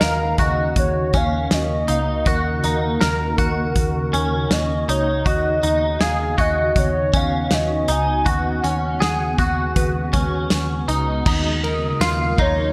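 Haunting and hazy, this dream pop excerpt drifts at 80 BPM in Eb minor, moving from Ebm7 to Badd9/D# at 5.3 seconds and back to Ebm7 at 11.3 seconds, all bathed in a lush hall reverb with bright 1980s-style digital production. A warbling, detuned synth lead carries the melody through chorus, tremolo, vibrato and delay, over a shimmering, granular ambient pad with slow attack, phaser and an octave-up shimmer, while a clean, twangy, compressed electric guitar plays arpeggios up front with ensemble chorus and delay. Beneath them a dark, round, foam-muted picked bass holds the low end, a loose acoustic indie kit with a fat snare, tight kick, tambourine and rolled-off top sits forward in a small room, and a soft, pure FM bell adds decaying texture in the background.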